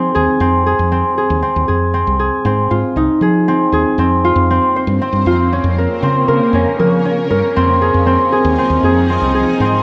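A straight 7/4 pulse at 118 BPM drives this pensive, restless piece of contemporary chamber music in F minor, cut from a longer work, where an up-front, ringing concert harp plays arpeggios over a round, punchy fretless electric bass with a dark, woody tone, while the harmony shifts from Fm7 to Bbmadd9/F at 4.0 s. At 4.7 s an ethereal pad enters with sustained chords, its octave-up shimmer colored by chorus, phaser and built-in reverb, before the harmony returns to Fm7. A recital hall reverb surrounds the ensemble, and a worn cassette-tape quality adds a warbly pitch drift.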